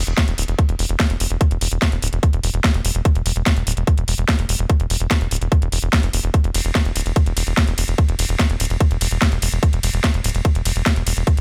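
Intense and psychedelic, this 11.4-second psychedelic trance excerpt drives along at 146 BPM in straight 4/4, built on a tight, punchy sequencer bass of sawtooth and square-wave tones with a plucky filter, moving notch and fast, decaying attack in the low register between D1 and F1, joined within the first fraction of a second by an overdriven drum and bass kit of cracking snare, bright hi-hats and ride cymbal, and an up-front, overdriven electronic kick that sits loudest in a digital ambience.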